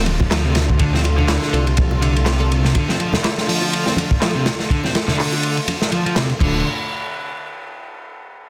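Gritty and swaggering, this breakbeat excerpt pairs an up-front, saturated drum kit with dark cymbals and a filter sweep against background handclaps, congas and bongos, while a thick, menacing detuned saw bass, a muted dub chord stab and a faint downlifter drop out by about 2.8 seconds, the bass returning briefly near the end, as a crunchy overdriven guitar riff with dub echo carries on over a smooth, bowed string section that pumps and sweeps through its sustained chords.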